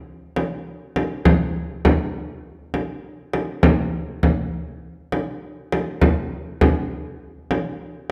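Soulful and melancholic, this short Arabic passage is cut from a longer piece and rests entirely on a lone frame drum. The drum enters at 0.4 s and sounds until 7.6 s, moving at 101 BPM in a straight 4/4 feel. Its tone is deep and large, an acoustic instrument struck with soft hands, yet compressed and saturated so it sits up front with a dense, gritty weight. A wet recital hall reverb with a 1.5 s decay surrounds the playing, lending the rhythm a spacious, mournful air. The whole passage forms a single section, a brief, unadorned meditation carried by one resonant voice.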